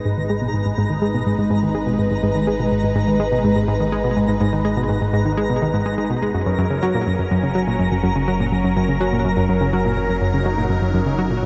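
Hypnotic and cosmic, this short cut from a longer piece of ambient, sequencer-driven space music moves at 124 BPM in 4/4 with a straight feel, sitting in G# minor and shifting from G#m to F# at 6.3 seconds. A round, sawtooth-and-square analog pluck carries the riff from 0.1 seconds, its fast attack, short decay and sub-octave weight placed up front and colored by chorus and delay. Alongside it, a swirling, detuned phased analog pad holds sustained chords with a soft attack and long release, its bright sawtooth tone treated with phaser and chorus. An evolving analog drone anchors the bass with pulse-width modulation and chorus, while a twinkling granular texture adds an octave-up FM shimmer bathed in its own built-in reverb. The dark, warm production sits in a huge, wet ambient reverb with a long 8.6-second tail, giving the whole passage a vast, floating depth.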